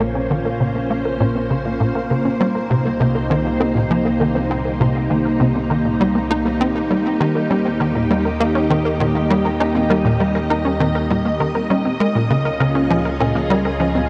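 A huge, wet ambient reverb with an 8.2-second tail washes over this short cut from a longer piece of sequencer-driven space music, giving it an expansive, cosmic mood in a straight 4/4. Up front, a vintage string machine playing as a full ensemble holds lush, full-bodied chords with a slow attack, a sub octave and a mellow ensemble chorus. Beneath it, a tight, punchy sequencer bass drives a nasal riff with decaying filter plucks, colored by ensemble chorus and tape echo, while a fat, saturated analog bass sustains the low end with a thick, detuned tone. Further back, a bright unison pluck of detuned saws spins arpeggios with short decays and tape echo, and a filter sweep runs over this arpeggio sound throughout. The harmony moves from Bbmadd9 to Cm7 at 2.4 seconds, settles on Eb, and turns to Dbadd9 at 12.0 seconds, with every part sounding across the whole 14-second passage.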